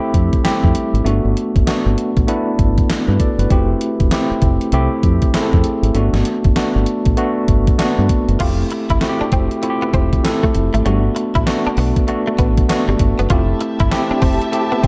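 A bouncy 16th-note swing drives this upbeat new jack swing excerpt, where a gated 80s drum machine with a thumpy kick, overdriven gated-reverb snare, handclaps, hi-hat and crash sits up front beside a round, punchy, dark fingered dub bass and a clean tine electric piano alternating Fmaj9 and Gmaj7, before a compressed, chorused clean electric guitar riff joins at 8.4 seconds and a lush, woody bowed string section adds sustained chords at 13.3 seconds, all within a dark, lightly reverberant production.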